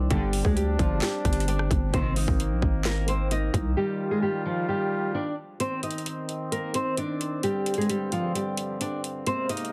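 A hard-hitting, menacing trap excerpt in C minor at 131 BPM with a half-time feel, cut from a longer piece. A fingerpicked nylon-string guitar carries the melody up front, its fresh strings and finger squeak given a classical touch and softened through a low-pass filter and tape echo. A warm brass ensemble holds sustained chords underneath, moving through Gsus4, Abadd9, Fsus2 and Cmadd9, while a dark, bowed string section adds expressive stabs with vibrato and portamento in the background until 2.3 seconds. The electronic trap kit sits up front with a hard-clipped kick, sharp snare, metallic hi-hats, handclaps and rim clicks, and a growling, buzzy 808-style bass with a fast attack drives the opening until 3.8 seconds. The drums drop out from 3.8 to 5.6 seconds before returning for the second section, all set in light reverb on a dense, heavily limited modern master.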